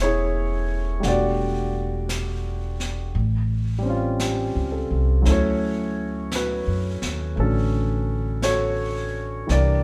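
Tender and romantic, this brief fragment of a slow jazz ballad settles into a gentle swung lilt in four. A concert grand piano carries the accompaniment, its tone warm with a deep low end, sitting up front as it moves through rich chords from Amaj9 to Em11, then A7alt and finally Dmaj7. Beside it, a pizzicato upright bass on gut strings sounds woody, dark and thumpy, also placed close in the mix. At 1.0 seconds a brush kit joins quietly, with brushed snare and hi-hat that come across airy and polished behind the other two. The trio plays together live in one large studio room, wrapped in a moderate reverb that lends the short passage an intimate, late-night glow.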